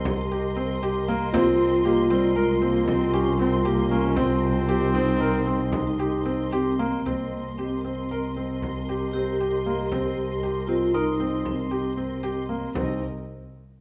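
This short, restless and pensive cut from a longer contemporary chamber piece sits in a moderate recital hall reverb, opening on a C minor seventh chord. In a straight 11/8 at 232 eighth-note beats per minute, a dark string section holds lush, woody sustained chords while a bowed double bass, up front and expressive with vibrato and portamento, anchors the low end on C. A felt-muted upright piano spins soft arpeggios with its hammer action faintly audible, and a vibraphone played with soft mallets rings out a metallic second line shimmering with fast motor vibrato. A deep frame drum, struck with hard hands, stays far back in the mix from 0.1 seconds. At 1.3 seconds a mellow, close-miked bass clarinet takes the solo melody in a jazz-inflected style with vibrato, stepping away at 6.5 seconds as the ensemble carries on into a new section at 7.1 seconds.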